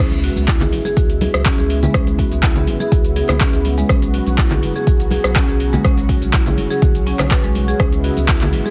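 A digital ambience surrounds this spiritual, warm afro house passage, cut from a longer piece and sitting on a drop, with a very quiet electronic impact over its first 1.9 seconds. An overdriven, deep electronic kick enters at 0.5 seconds, joining an overdriven afro-pop kit of handclaps, rim click, shaker and metallic hats that is already playing, both re-recorded in a small room. Ringing, close and dry congas sit in the background. A round sine sub bass with a fast attack holds the low end, while a dark, smooth marimba played with medium mallets spins arpeggios through dub echo. Above them, a bright, detuned sawtooth pad with a soft attack, chorus and a moving notch sustains chords that move from C#m7 to Bsus2 and back, and the pad, marimba and sub bass each pump with sidechain compression.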